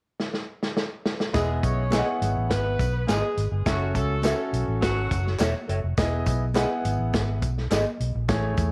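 Warm and joyful, this uptempo 1960s-style soul excerpt opens with a drum fill on a soul kit with a tight kick and rolled-off top, before a round, foam-muted electric bass, an intimate grand piano with audible action noise, and very quiet high-tuned congas arrive at 1.3 seconds on Emaj7, which later moves to F#m7. A distant, roomy saxophone section with vibrato and tape echo carries a second line until 5.4 seconds, while tambourine and handclaps sit in the background and a slightly broken-up guitar through a small old amp adds picked stabs with analog chorus. Light reverb gives the whole a small-room ambience.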